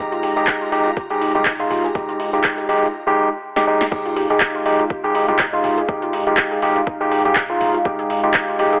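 A swung sixteenth-note groove in 4/4 drives this deep, hypnotic deep house excerpt. An overdriven drum kit sits up front with a punchy snare, metallic hi-hats, handclaps and crash cymbal, layered over a deep, overdriven electronic kick drum. Also up front, a bright, barky tine electric piano plays stabs over an Fm9 chord, gritty with vintage sampler crunch and combo-amp drive and fed through digital delay. Further back, a warbling, nasal, lo-fi pluck spins arpeggios through chorus and tape echo, while a hollow, organ-like FM bass with a fast, decaying attack adds dark, tube-saturated weight, and a rich bowed violin section with vibrato and a grainy acoustic tube shaker color the opening until 2.9 seconds. After a drum fill, the drop arrives at 3.9 seconds, bringing a moody, detuned sawtooth analog pad with slow attack and chorus holding sustained chords. The pluck, piano, bass, violins and pad all pump with sidechain, and the mix is bathed in lush hall reverb and squeezed into a narrow telephone tone.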